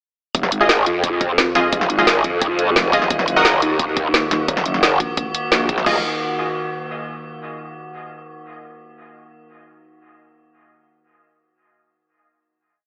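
A growling, saturated bass sits up front in this tense piece of dark technical drum and bass, its detuned, wobbling phrases joined by a nasal vowel-sweep wobble bass that surfaces in two short bursts, the longer from 4.1 s. Tight electronic drums with a woody snare and bright hats drive the drop from 0.3 s alongside a layered broken-beat kick. Bold, punchy orchestra-hit-like stabs echo sparsely in the background, and an eerie, metallic FM drone enters with a slow attack at 1.5 s over Fm7 and Ebm chords, all within a futuristic mix with a lush hall reverb and an AM radio sound before settling on a final Fm7 chord.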